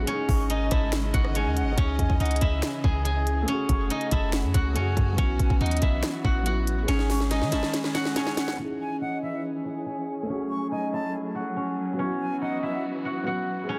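This dark, menacing trap cut from a longer hip hop piece moves at 141 BPM with a half-time feel in C# minor, built on suspended and add9 minor chords. A bright, silvery steel-string zither carries the melody up front, its fingerpicked notes ringing through a low-pass filter and delay, while a felt-muted upright piano adds soft, intimate accompaniment beneath. A lush symphonic string section holds bowed chords with vibrato and portamento, and an airy concert flute threads a quiet second line through delay. Deep, boomy 808-style bass with a fast attack and a produced electronic trap kit of hard-clipped kick, sharp snare, crisp hats, rim clicks and finger snaps drive the opening, with a drum fill from 6.9 seconds before the bass drops out at 7.6 seconds and the drums at 8.6 seconds. From 8.6 seconds a filter sweep carries the zither, piano, strings and flute through the second section in a small room, all pressed into a dense, heavily limited modern master.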